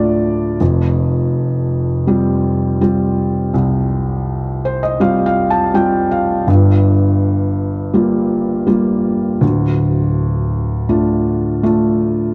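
Folk music with a nostalgic, heartfelt mood, carried entirely by a felt-muted upright piano playing solo for the whole 12.3 seconds. The piano sits up front with a soft, mellow, intimate tone, and the audible action noise adds a vintage closeness to its smooth sound. Its range reaches from D1 in the deep bass up to A5, giving the short passage both weight and a gentle upper voice. The harmony moves from Dm through Fsus2, settles on Gm7 at 6.5 seconds, and returns to Dm at 9.4 seconds. Light reverb and a dark, warm production frame this brief excerpt from a longer piece in a straight 4/4 feel.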